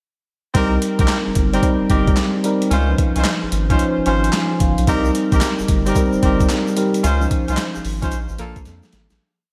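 Bright 1980s-style digital production bathed in lush hall reverb frames this punchy, bouncy new jack swing R&B piece at 111 BPM in C phrygian, where a gritty, compressed sampler-style boom bap kit with a thumpy kick and clap-layered snare drives a hard-swung beat through gated reverb, a round analog bass plays a swung synth-funk line with muted ghost notes and chromatic approach notes, a mellow tine electric piano with analog chorus adds syncopated chord stabs and a short fill at 3.8 seconds, a clear horn section with vibrato fires tight syncopated stabs through digital delay, and a grainy egg shaker slips into the background with sixteenths at 4.9 seconds before the piece fades out from 7.0 seconds.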